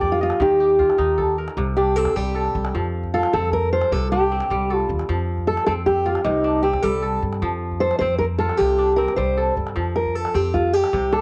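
A flowing, straight 12/8 feel at 103 BPM in dotted quarters drives this hypnotic piece of West African string and xylophone music in C dorian, cut from a longer performance. A fingerpicked steel-string acoustic guitar carries the melody up front, its dark tone marked by finger squeak and a cassette tape coloring, and from 1.6 seconds it takes a solo that runs to the end at 11.2 seconds. Beneath it, a kora spins ringing, crisp arpeggios across a broad span from Bb2 to G5, also touched by cassette tape, while a pizzicato upright bass holds the low end with a woody, thumpy sound. A deep, compressed and saturated calabash keeps time in the background until 11.0 seconds. The harmony circles between Cm and F, with Eb and C5 chords appearing along the way, all set in a small room with light reverb that gives it the intimate feel of a home recording on cassette.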